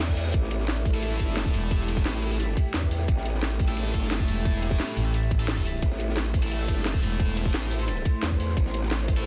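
A growling, wobbling bass sits up front through this aggressive, dark technical drum and bass cut, its formant-filtered, overdriven tone thickened by chorus and pumped by sidechain, while a tight electronic kick hits up front alongside it. At 175 BPM in A minor, a straight 4/4 groove comes from a layered drum and bass kit with a cracking snare and metallic hats, beneath which a very quiet breakbeat kit adds gritty, saturated texture, dark cymbals and a high-tuned snare. From 0.9 seconds, a bright, double-tracked high-gain guitar cuts in with distorted picked stabs trailed by delay. A second, thick FM bass growls in briefly at 1.5 seconds and returns from 4.3 to 7.5 seconds, reaching down to E1. Underneath it all, a deep, moody ambient pad holds sustained chords with a slow attack, chorus and its own reverb, pumping along with the sidechain. The whole excerpt stays on a single A minor chord, in a dense, heavily limited modern mix with light reverb.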